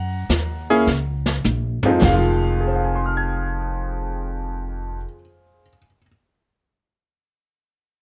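A light reverb wraps this brief, late-night jazz piano trio cut from a longer piece, and all three instruments sit up front in a smoky, intimate mix. The concert grand carries the melody throughout, its tone clear and natural with a deep low end, ranging from its low register up into its bright upper register. Beneath it, the upright bass is plucked with a woody, thumpy character from steel strings, holding down the low line until it drops out at 5.0 seconds. The brushed drum kit enters at 0.3 seconds, sounding dark and smooth in a small room with dark cymbals, a medium-tuned snare and a boomy kick. It plays a fill from 0.9 to 2.0 seconds before falling away at 2.2 seconds. The swung phrase rests on a Gb chord before settling onto F minor seventh, leaving the piano to close the moment alone.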